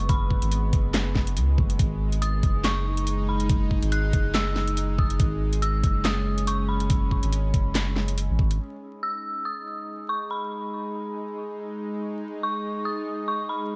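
A half-time 4/4 groove at 141 BPM with swung 16ths drives this brooding, cavernous deep dubstep in G# minor. A knocking electronic kick and a tape-warm kit of huge snare, handclaps and metallic hi-hats play the drop with a soft, round, up-front sub bass until 8.6 seconds. Over a G# minor chord, a tense, string-like sawtooth drone with vibrato and built-in reverb holds sustained chords while an eerie, inharmonic FM bell carries the melody through chorus and dub echo, both lasting to 13.8 seconds, with light reverb and vinyl crackle around them.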